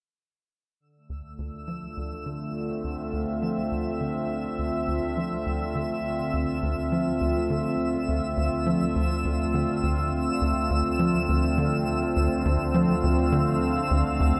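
Ambient cut from a longer piece, cosmic and mysterious, in D minor at 103 BPM and resting on a single Dm7 chord inside a vast, echoing cathedral space. A tight, punchy sequencer bass with a sawtooth bite and filter pluck drives a riff through ensemble chorus and delay, fading in from 0.8 seconds, while an evolving, warbling wavetable pad holds sustained chords up front under a filter sweep. High above, a twinkling granular texture adds sparkling FM shimmer on a single high note, bathed in its own reverb.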